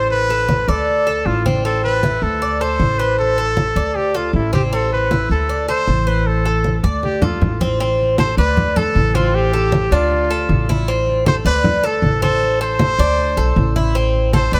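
A clear trumpet with light vibrato, scooped notes and tape echo sings the melody from the first moment over a bright, metallic tres picking arpeggios on doubled strings and a woody, thumpy pizzicato upright bass, with soft-handed congas entering at 0.1 seconds in this nostalgic Cuban son and guajira excerpt at 156 BPM, where a drum fill at 6.6 seconds leads into a new section at 7.8 seconds as the chords move among D5, Am and Dm, heard through light reverb from further back in the room.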